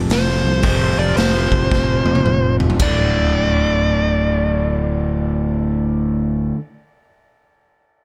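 Lightly reverberant and gritty, this brooding blues rock and southern rock power-trio excerpt swings at 111 BPM in D minor. A crunchy, double-tracked overdriven guitar riff sits up front over a growly, overdriven fingered bass, while a nasal lead guitar with a parked wah plays a high melody. A raw, saturated garage drum kit with a punchy kick and a pumping stone-room sound plays a fill from 1.7 seconds and stops at 3.0 seconds, as the chords move from F5 to D5 at 2.8 seconds.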